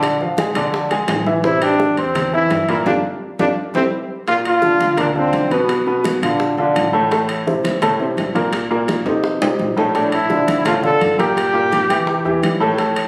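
Captured on a phone in the room and bathed in a moderately large studio reverb, this sunny, danceable salsa excerpt moves at 169 BPM, with a clear, polished upright piano up front whose action noise is audible, over a dark, thumpy pizzicato upright bass on gut strings in the background. The percussion blends thick-skinned congas played with hard hands, very quiet tight, high-tuned bongos and ringing metal-shell timbales, with a band accent and drum fill near 3 seconds. A bright, close-miked trombone with vibrato takes the solo melody up front from 1.4 to 6.2 seconds and returns at 9.9 seconds.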